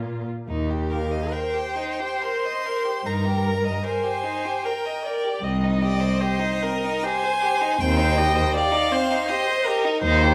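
Tender and warm, this slow romantic movement for string quartet moves in a flexible, rubato 3/4 at around 63-82 BPM in Eb major, tuned to A4 = 441 Hz. The cello anchors the bass in its low register with a rich tone, vibrato and expressive portamento, sitting up front in the blend. The second violin and viola, both heard from a distance, fill out the middle: the violin lays down a smooth, even second line with vibrato, while the viola's accompaniment is clear and focused. From 0.9 s the first violin carries the melody high above them, close and clear, with smooth, even bowing and vibrato. The harmony moves gently from Eb through Eb/G to C minor and Cm/Eb, all in a moderate recital-hall reverb, in this excerpt cut from a longer piece.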